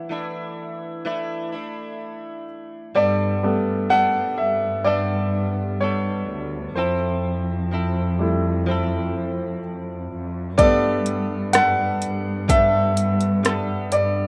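A rough home-demo mix in a small, moderately ambient room opens this tender, emotional pop ballad at 63 BPM in 4/4, cut from a longer piece and moving through Asus4/E, Gadd9 and Fmaj7. A clear, up-front concert grand piano with deep bass and a vintage smoothness accompanies in plate reverb, taking a solo from 3.0 s, while a bright, compressed, direct-recorded electric guitar picks clean arpeggios through analog chorus and plate reverb. A dark, veiled cello section, muted con sordino, bows the bass line with vibrato from 3.0 s, and an overdriven electronic R&B kit of soft kick, warm hi-hat and rim click arrives at 10.6 s.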